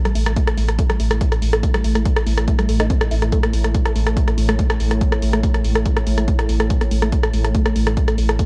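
Driving peak-time techno at 142 BPM, relentless and hypnotic, built on a punchy, tape-warm electronic kick entering at 0.4 seconds, an analog drum machine's hi-hat and rim click, a thick, saturated sub bass pumping on A1 under a low-pass filter, a tight, nasal sawtooth riff between G3 and A4 sitting in the background with chorus and tape echo, and a deep, dark ambient pad droning on A2 with slow-attack chorus and reverb, all captured as a lightly reverberant home cassette recording cut from a longer piece.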